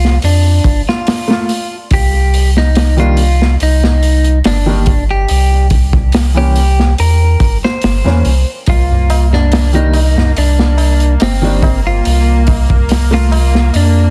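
Brooding and cinematic, this trip hop excerpt moves at an unhurried 71 BPM in a straight 4/4 feel. A deep, round sub bass sits up front beside a crunchy breakbeat kit whose punchy kick, medium-tuned snare and hi-hat come across saturated and gritty with a rolled-off top. A clean, picked electric guitar carries the melody through a dub echo, while a felt-muted upright piano enters at 1.3 seconds with a soft, mellow accompaniment colored by harmonic tremolo and tape echo. At 8.7 seconds a bowed studio string section adds a biting, intense sustained chord with light vibrato, and a high-tuned tabla with a short ring taps close and dry in the background. The harmony drifts through Gm9/C, Eb6, C7 and Ebmaj13, all framed by small room ambience, vinyl crackle and a dense, heavily limited modern master.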